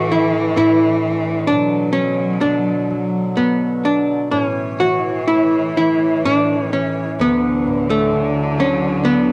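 A rubato 3/4 lilt at about 62-67 BPM carries this tender, pastoral Celtic slow air, cut from a longer piece and tuned to A4 = 436 Hz, where a clean, hollow-body archtop guitar picks the melody up front, a boxy, expressive bowed cello adds a second line with vibrato and portamento, a ringing, fingerpicked concert harp accompanies, and a reedy, airy accordion with slow beating holds sustained chords in the background, moving through Dsus2/A, Bm, A and Dadd9 over 9.3 seconds with a cassette-tape home-recording character and light small-room reverb.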